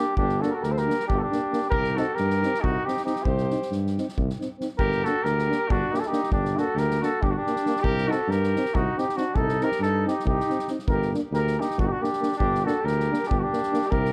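Balkan brass band folk in a restless, virtuosic 7/8 at 275 BPM, moving between G minor and C minor in this excerpt from a longer piece. A dark cornet with vibrato carries the melody up front, joined by a punchy trumpet second line with tape echo, while two euphoniums sit in the background as accompaniment with light vibrato, one mellow with a soft attack and the other warm. A roomy tuba holds the bass up front and a soft-mallet drum kit adds kick and medium-tuned snare; both enter at 0.2 seconds, and the band sits in light reverb.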